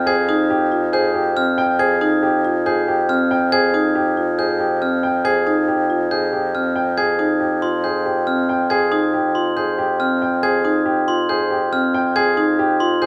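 A moderate studio reverb lends a roomy sheen to this hypnotic, bright stretch of minimalist classical pattern music, cut from a longer piece and resting on a single Fm7 chord for its 13.1 seconds. A polished baby grand piano carries the melody, and a clear bassoon with light vibrato holds the bass on one low note. A woody, close-miked marimba and an up-front, bell-like glockenspiel played with soft plastic mallets spin arpeggios, the glockenspiel ringing high above the rest.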